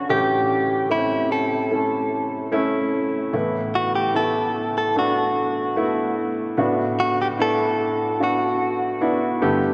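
Tender and heartfelt, this short pop fragment, cut from a longer piece, moves at an unhurried 74 BPM in a straight 4/4, tuned slightly below standard pitch. A baby grand piano carries the accompaniment, its open, warm tone sitting up front across a low-to-middle range. Above it, a clean electric guitar recorded direct plays the melody in a narrow upper register, its picked notes compressed and placed close to the listener. The harmony moves from A7 into Asus2 at 3.3 seconds, where a second section begins, then settles on D6/A. The whole performance is bathed in the long, wet reverb of a church or concert hall, lending a spacious glow before the guitar stops at 9.4 seconds and the piano rings on until 9.7 seconds.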